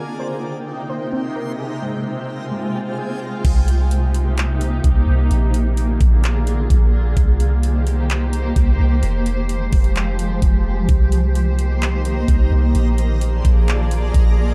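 Half-time 4/4 trap drums at 129 BPM, with a knocking kick, metallic hi-hats, handclaps and crash cymbal, drive this melancholic, ethereal cloud-rap excerpt in C minor, where a blurred, pumping granular pad sustains Cm7, Fmadd9 and Bb7 chords throughout, a lo-fi, detuned pluck arpeggiates with chorus and delay beside a reversed, dreamy texture in the opening, and a very quiet swell at 2.5 seconds leads into the drums and a round, deep 808-style bass at 3.4 seconds, with the reversed texture returning at 10.9 seconds inside a dark digital ambience.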